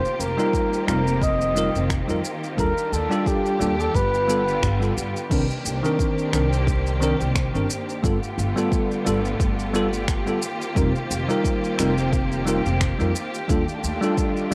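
Relaxed and smooth, this sunset chillout cut in C dorian moves at 88 BPM with a gentle swing, as a breathy, mellow flugelhorn sings the melody with light vibrato and analog delay until 5.0 seconds over distant, lush bowed strings, bell-like tine electric piano chords with echoing delay, a woody pizzicato upright bass, a deep electronic kick and a deep house kit of crash, finger snaps and shaker, all wrapped in cassette-tape character and a moderate spring reverb, with a band accent at 4.6 seconds.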